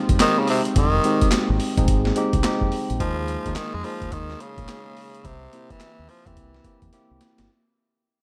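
R&B in a new jack swing vein at 107 BPM in F minor, this bouncy, confident fade-out sets a raspy, bright tenor saxophone melody with delay over a worn, slightly out-of-tune tine electric piano, a deep, round dub fingered bass and a gritty, compressed, pitched-down boom bap drum kit with thumpy kick, high-tuned snare, handclaps and hi-hat, all in a moderate echo-chamber reverb, moving through Fm7, Ebsus4 and C7 before a drum fill at 6.9 seconds.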